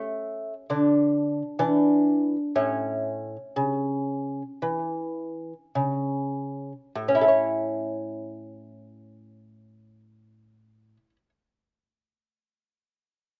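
A solo lute, fingerpicked on gut double strings with some courses doubled at the octave, opens this short fragment of a baroque-style dance, its delicate tone placed up front in a flowing, dance-like mood. The pace is rubato and slows over the first 7.0 seconds, moving through a few chords before a second section begins, and the lute plays until 11.3 seconds. Recorded outdoors, the sound is dry and close, with little reverb.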